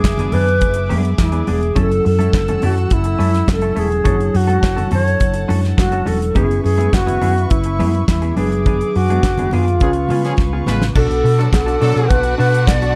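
A sultry, danceable disco excerpt opens with a bright, airy alto flute carrying the melody up front over a damped 70s drum kit with handclaps and a tight kick, a round hollow-body fingered bass, a clean semi-hollow guitar bathed in lush chorus, a worn, slightly out-of-tune tine electric piano in the background, gut-toned studio strings holding sustained chords and very quiet congas. Smooth horn stabs enter at 9.8 seconds amid a band accent, and a drum fill then ushers in a clear, focused second string line at 11.0 seconds, all set in a dark production with light reverb and studio ambience.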